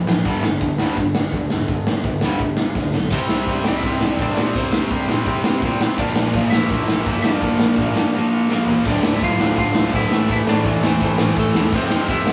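Two picked rhythm guitars open this raw, aggressive punk rock excerpt, one overdriven and up front, the other distorted and compressed further back, over a punchy fuzz bass and a big acoustic drum kit with bright cymbals, a punchy kick and an airy stone-room sound. A twangy, slightly broken-up lead guitar enters with the melody at 3.1 seconds, just after a drum fill. A second fill at 8.5 seconds leads into a final section moving through Dm and Am, all captured in a rough rehearsal-room recording with warm saturation and light reverb.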